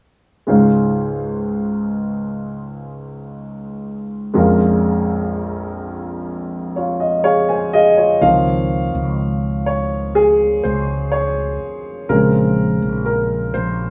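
Small-room ambience and a wet studio reverb give this tender, hopeful pop passage at 62 BPM the intimacy of a band playing together in one room. A warm, polished grand piano sits up front, accompanying over Dbmaj7 and Bbm7 in Db major from 0.5 s. At 8.2 s it moves into a solo as a round, dark fretless electric bass enters low beneath it, both parts carrying on until the cut at 13.9 s.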